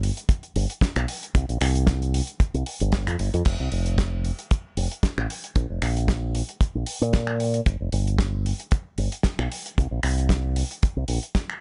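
The recording is close and dry, with little reverb and a top end that stops at 10.8 kHz, giving it a rounded, vintage cast. This groovy, feel-good nu-disco fragment, cut from a longer piece, moves at 114 BPM in 4/4 with a light 16th-note swing and is tuned to A4 = 439 Hz. A fingered electric bass run through an envelope filter sits up front with a direct tone and sidechain pumping, ranging from F1 to Bb2. It is backed by a damped 70s acoustic kit with a fat snare, hi-hat, finger snaps and crash cymbal in a small room, while a tight, up-front kick joins at 0.3 seconds. The piece opens on a drop that gives way to a new section at 3.5 seconds, with the groove carrying through to the end.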